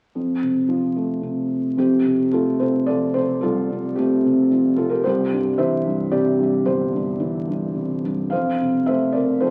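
A felt-muted upright piano, soft, boxy and intimate with audible action noise, plays solo from 0.2 to 9.5 seconds in this sunny, lyrical classical fragment in F major at 110 BPM in a rubato 3/4, moving through F, Fadd9 and C before settling back on F, heard through a wet scoring-stage reverb and the crackle of a very old 78 rpm record.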